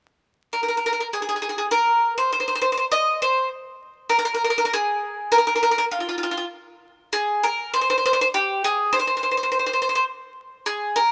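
Vinyl crackle and a light reverb frame this short, romantic and wistful piece of Italian folk, cut from a longer work and moving in a rubato triple metre. A solo bowl-back mandolin sits up front from 0.5 seconds, its bright, picked double strings ringing acoustically in a compact middle register. At 7.1 seconds the music turns to a new section, which carries on until the mandolin stops at 11.1 seconds.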